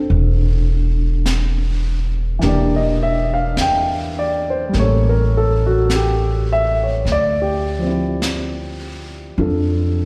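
A dark, mellow grand piano sits up front in this romantic, late-night jazz ballad, its natural tone and short sustain touched by a slapback echo as it ranges from D3 to G5. Close beside it, a pizzicato upright bass on steel strings gives a woody, shadowy low end from E1 to F2, also up front and slightly louder than the piano. A vintage brush drum kit sits lower in the balance, with brushes on a high-tuned snare and hi-hat, its sound mid-forward and rolled off at the top. The tempo is a slow 52 BPM in 4/4 with a swung eighth-note feel, and the harmony moves through Am11, Em7b5, A7b9 and Dm11 over this 10-second fragment of a longer piece. It is heard as a live gig through the venue's PA, with recital hall reverb and small room ambience adding a light sense of space.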